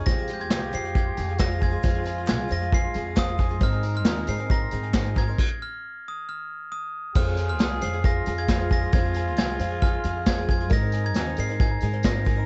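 Wistful and bittersweet, this short indie folk passage in a straight four pairs a sparkling glockenspiel melody with a growling, raspy trombone second line over a shimmering twelve-string guitar, woody upright piano arpeggios, plucked upright bass, dark-cymbaled brush drums up front, a jingly background tambourine and hollow handclaps that fall away at 5.0 s before a stop at 5.4 s, all in a dry, dark production.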